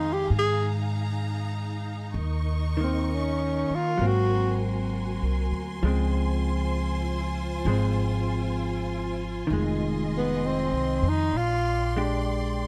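A melancholic, wistful jazz ballad in F minor at 65 BPM with a swung feel opens with everything at once: a breathy, mellow tenor saxophone takes the solo melody up front with vibrato, subtone and scooped notes, over a dark, clean, picked hollow-body electric guitar and a woody pizzicato upright bass. Behind them, a lush symphonic string section holds soft-attack bowed chords with expressive vibrato, moving through harmonies like Fm7, Dbmaj7 and Bb13. The close, dry sound keeps every detail intimate, and the saxophone drops out at 12.0 seconds just before this fragment of a longer piece ends.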